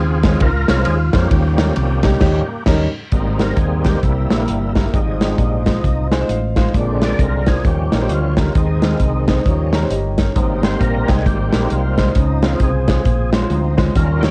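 Uptempo gospel at 133 BPM in Ab major, swung and soulful with a hopeful lift, heard here as a short cut from a longer piece. An overdriven tonewheel organ leads throughout, its thick, gritty chords colored by key click, chorus vibrato and a slow rotary speaker. Underneath, a fingered electric bass sits dark, round and up front, while a modern studio drum kit brings bright cymbals, a medium-tuned snare and a punchy kick from 0.2 seconds onward. A clear, woody upright piano accompanies in the background and steps out for a brief fill at 5.8 seconds, after a band accent lands just before a French horn section enters at 3.1 seconds with vintage, lightly vibrato sustained chords. The changes move through rich seventh chords such as Dbmaj7, Eb7 and Abmaj7, and the whole performance carries the light reverb and soft haze of a home cassette recording.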